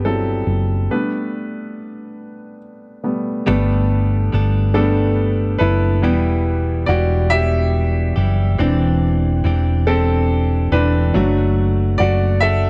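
A melancholic, aching six-eight pop ballad at a slow 47 BPM, this excerpt from a longer piece opens on a clear, smooth grand piano with a vintage, short-sustained tone, carrying a featured solo alongside a round, punchy hollow-body bass that sits dark and up front in the lowest register. At 3.5 seconds a direct-recorded clean electric guitar enters with picked, compressed, scooped arpeggios as the second section begins. Across the excerpt the harmony moves through Emadd9/G, Gadd9, Em, Cadd9/E and D/F#. The sound is dry and close, a 1970s-style studio recording with a small room ambience.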